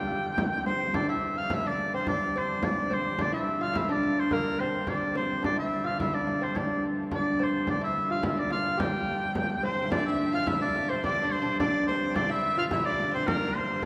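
A clear, up-front shawm leads this mysterious, ancient-sounding medieval dance in G dorian at 107 BPM in 2/4, tuned to A4 = 438 Hz. Its folk-style melody carries vibrato and scooped notes, set back in a roomy, distant space. Beneath it a mellow, fingerpicked lute with gut double strings plays a delicate second line, a dark, reedy hurdy-gurdy holds a drone in the background, and a frame drum struck with hard hands enters at 0.4 s. At 9.6 s an earthy bowed fiddle with light vibrato joins quietly in the background, the whole passage, cut from a longer piece, bathed in a wet church reverb.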